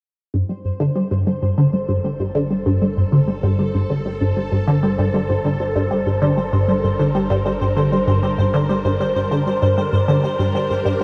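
Ambient, sequencer-driven space music with a hypnotic, cosmic mood, this fragment of a longer piece sits on a single G minor chord in a straight 4/4. Up front, a resonant blip pluck plays a low riff with a juicy, squelchy square-and-sawtooth tone, fast attack and short decay, colored by phaser, lush chorus and delay. A filter sweep runs across this synth line throughout. Behind it, a vintage phased string machine fades in from 0.3 seconds with swirling, sustained chords under ensemble chorus. High above, a pulsing, tempo-synced gated texture holds one detuned triangle note with slow attack, long release, chorus and its own built-in reverb. The whole mix is wet, set in a huge ambient reverb with a 7.4-second decay that lets the sounds hang in space.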